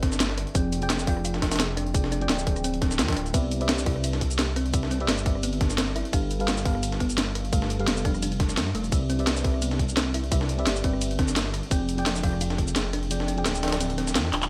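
Set in a digital ambience, this lush, warm liquid drum and bass excerpt moves at 172 BPM in C major, cycling through Cmaj7, Fm6 and G9. A soft, round FM electric piano with chorus, phaser and delay carries the chords, while a tine-like, thumb-piano-style synth pluck with chorus and delay spins arpeggios in the background. Beneath them sits a deep, rumbling, detuned saw bass, along with two layered kits: a sampler-style break with a gritty, pitched-up, high-tuned snare re-recorded in a large room, and a produced drum and bass kit with a cracking snare, claps, ride, rim click and shaker, all over a tight, up-front electronic kick that stops at 12.7 seconds before a drum fill at 14.3.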